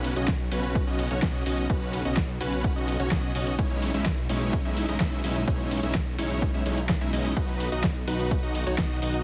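Festival progressive house at 127 BPM in straight 4/4, this short excerpt from a longer piece feels euphoric and triumphant. A dense, compressed supersaw carries the riff between G#3 and E5, its thick, airy unison sawtooth layers sitting up front with vibrato, tape echo and sidechain pumping. Underneath, a detuned saw bass holds B1 with a lush, mellow chorus-treated tone that also pumps against the beat. The big-room dance kit brings an overdriven, huge snare along with hi-hat, ride, and cabasa, while a punchy, tape-flavoured electronic kick enters at 0.3 seconds and stops at 8.9 seconds. The harmony moves from F#sus4/B to C#madd9/B before landing on B at 7.4 seconds, all set in light digital ambience with a heavily compressed, radio-ready sound.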